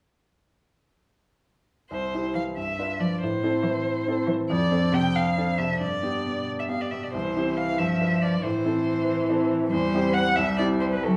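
Classical-period piano trio movement in a quick, lively 6/8 at 92 BPM in dotted quarters, with a cheerful mood and rubato phrasing, cut from a longer piece. The violin carries the melody up front with an expressive, vibrato-laden tone and portamento, while the clear, open baby grand piano provides accompaniment with long sustain from 1.9 seconds, and the cello adds a rich, bowed second line from 2.3 seconds. A moderate large-studio reverb blended with a small room ambience surrounds the trio as the harmony moves from C through G7, Am and Dm7/F before settling back on C.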